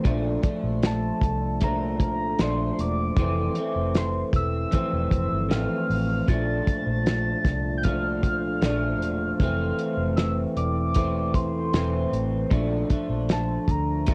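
Indie bedroom pop at 77 BPM, laid-back and dreamy, built on a slow sway between Bbmaj7 and Fmaj7 in a short cut from a longer piece. An up-front electric guitar through a small old amp sounds slightly broken-up and compressed, with analog chorus, warbly pitch drift and cassette tape coloring it, while a dark, foam-muted fingered bass sits round beneath it and a cloth-damped drum kit thuds with a fat snare, tight kick, hi-hat and rolled-off top. From 0.9 seconds a soft, octave-layered synth lead floats high above with a triangle-and-sine tone, vibrato, subtle chorus and plate reverb, all inside a light-reverb home cassette recording.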